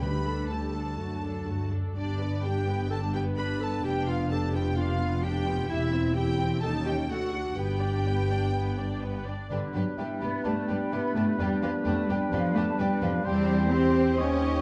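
A dark, warm production places this symphony orchestra in a recital hall with moderate reverb, and the cut from a longer piece opens on a brief timpani stroke played with medium mallets that sounds only in the first 0.7 seconds. The quick, classical-period movement runs at 128 BPM in 4/4 with a straight feel in G major, cheerful and graceful in mood. A rich, focused violin section carries the melody from the background, while a second, intense violin section and a solo clarinet add second lines, over a lush, even viola section in accompaniment and sustained chords from a tight, close-miked French horn section. The low end comes from an expressive, distant cello section and a clear double bass section, both bowed with vibrato. At 9.5 seconds a new section begins, bringing in a clear solo oboe and an airy, hollow flute section on second lines, with a mellow bassoon joining the accompaniment through to 14.6 seconds.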